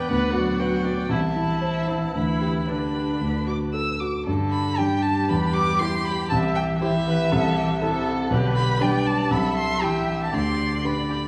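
A quick classical-period movement for piano quintet in G major, this graceful, cheerful passage runs at 118 BPM in 4/4 with a rubato feel and is cut from a longer piece. A single bowed violin carries the melody with vibrato, expressive portamento and a smooth top, while a second violin plays its own line in the same manner. The cello adds a clear second line in the low register, and the viola fills the middle with rich, even accompaniment; both of these strings sound somewhat distant. The grand piano is up front, warm and intimate, with audible action noise and short sustain as it accompanies. All five parts play from the opening to about 11.3 seconds, and after a new section begins at 4.3 seconds the harmony moves through chords such as Em, C and G/D. Moderate scoring stage reverb and small room ambience give the recording a sense of space.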